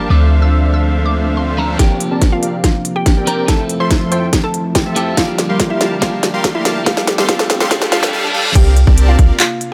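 Dreamy and bittersweet, this half-time future bass excerpt at 142 BPM sets a woody, round mallet-like synth pluck melody with chorus and delay over a clean picked electric guitar and a fat, detuned sawtooth polysynth riff, with a very quiet breathy pad sustained beneath. The pluck, guitar and polysynth all pump against a deep, boomy 808-style bass that sounds at the start and returns at the drop at 8.6 seconds, while a riser and reverse cymbal lead a build-up from 1.8 seconds where a hard-clipped kick and a trap kit with sharp snare, crisp hats, handclaps and crash drive through a filter sweep over chords moving from Dm7 through C9sus4, Fmaj7 and Gm7.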